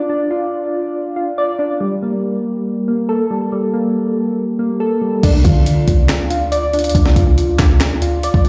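This half-time trap groove sits at 140 BPM in 4/4, a brooding, hard-hitting hip hop cut in D minor that is taken from a longer piece. For the first 5.2 seconds, soft electric-piano-like synth keys play arpeggios alone, their round, gentle tone coloured by chorus, phaser and delay as the harmony moves from Dm to Gmadd9. At 5.2 seconds the harmony returns to Dm and a breakbeat sampler-style drum kit arrives up front with a thumpy kick, a high-tuned snare, handclaps, hi-hat and crash cymbal, all compressed and gritty. A clean 808-style bass enters at the same moment, deep and boomy with a sine-like, fast-attack body that decays under the beat. The mix carries light digital ambience and a large studio reverb, sounding as if played through a big sound system in a bare room.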